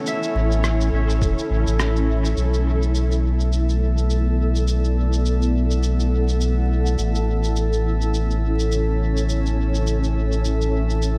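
A deep, round sine sub bass sits up front in this hazy ambient dub excerpt at 104 BPM in B minor, beneath a cloudy, detuned granular pad whose filter sweep begins at 2.4 s as the chords move from A to Bm7, while a bright, fingerpicked Celtic harp rings briefly in the background with dub echo at the opening, a muffled, pitched-down cabasa and rim click play through studio reverb and echo, a compressed, thumpy kick appears briefly at 1.2 s, a glassy harmonics texture of drifting overtones with chorus enters at 3.1 s, and vinyl crackle hangs over the dry-sounding mix.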